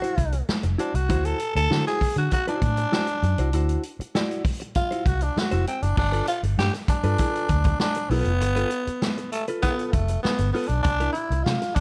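A light reverb surrounds this playful, strutting funk cut, taken from a longer piece and moving at 98 BPM in a straight 4/4, tuned to A4 = 442 Hz. A growling tenor saxophone carries the melody up front from the start, its tone breathy, raspy and gritty in a jazz style, and it plays a solo through the first 6.0 seconds. A clean, picked electric guitar supplies compressed accompaniment in a higher register. A vintage foam-muted fingered electric bass enters at 0.2 seconds with a dark, round, amped sound placed up front, and it is the loudest of the parts. A swinging big-band drum kit recorded in a roomy studio space adds dark cymbals, a medium-tuned snare, hi-hat and a boomy kick. The harmony moves from D9 to G9 at 6.0 seconds and then to C9 near the close.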